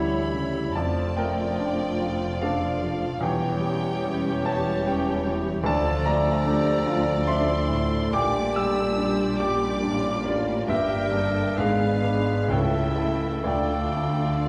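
Classical romantic movement for piano and orchestra in D minor, passionate and tragic, moving in a rubato 3/4 at 60-77 BPM, where a clear, up-front grand piano carries the melody with a lush, vibrato-rich symphonic violin section, while clarinet, a hollow, pure flute and an expressive chamber violin section weave second lines, bassoon and portamento violas accompany in the background, a very quiet French horn section holds mellow chords, and focused double basses with soft-attack cellos anchor the bass, all bathed in wet recital-hall reverb as the harmony turns through G minor and A7/C# to close on D minor at 13.5 seconds.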